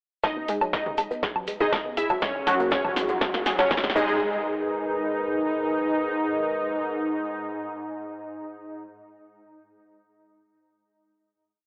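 A thick, detuned unison lead and a glassy wavetable pluck doubling it an octave higher open this hypnotic, cinematic melodic techno piece at 121 BPM in G# minor, riding a distorted four-on-the-floor kick, a punchy analog drum machine fill, grainy maracas and a tight sequenced arpeggio under a filter sweep, while a galloping sequencer bass, echoing brassy power-chord stabs, a moody analog pad, a swarming drone and a faint riser thicken the build until the final hit at 4.2 s, where the drums drop away and the lead, pluck, stabs, pad and drone carry on through a gritty, telephone-like hardware sound with lush hall reverb and sidechain pumping on the lead, pluck, pad and stabs.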